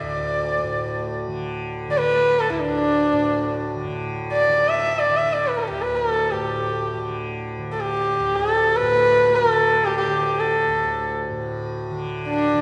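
In free time, this meditative, devotional Hindustani classical passage, cut from a longer piece, lets a single dark-toned sarangi carry the melody up front, its bowed line gliding between notes with light vibrato, a soft attack and an airy, intimate bow that sets its sympathetic strings ringing. Beneath it, a softly plucked tanpura sustains a low, buzzing, shimmering drone for the full 12.6 seconds. Both sit in a lush, reverberant hall sound with a gently rolled-off top end.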